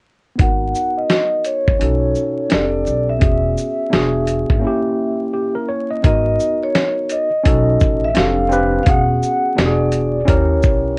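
Warbling old cassette tape, vinyl crackle and a dulled top end wrap this nocturnal, smoky, swung jazz-hop excerpt, where a mellow, ringing vibraphone with soft mallets carries the melody over a slightly out-of-tune tine electric piano, a woody pizzicato upright bass with tube saturation, and an up-front, gritty sampler-style drum kit of thumpy kick, snare, hi-hat and shaker, as a filter sweep running from the start and a break from 4.6 seconds lead into the second section at 6.0 seconds.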